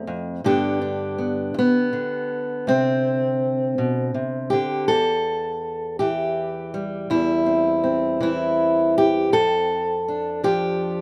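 Warm and gentle, this short folk passage features a single fingerpicked steel-string acoustic guitar playing alone from 0.0 to 11.0 seconds. It moves at an unhurried 54 beats per minute in 6/8 with a straight feel, centered in C major. The guitar's auditorium-bodied tone sits up front, spanning from low E2 up to A4, and a moderate studio reverb lends the room a soft, natural glow. The harmony drifts from G to Csus2 in the opening phrase, then shifts at 4.9 seconds into a second passage that moves through Em and C/E before settling on F6. Cut from a longer piece, the fragment holds a warm, gentle quality throughout.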